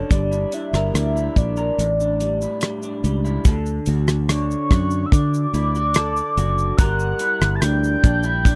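A damped 1970s-style drum kit of tight kick, hi-hat, rim click and shaker sits up front in a straight 4/4 beside a dark, round, foam-muted fingered bass, while an electric guitar through a small old amp adds a slightly broken-up, compressed, picked accompaniment with subtle chorus and warbly pitch drift, and a soft octave-layered synth lead carries a full, sustained, vibrato-tinged melody through analog chorus over Gm6 and A7sus4 before moving to D, giving this sunny, dreamy indie and bedroom pop excerpt a dry, close small-room sound.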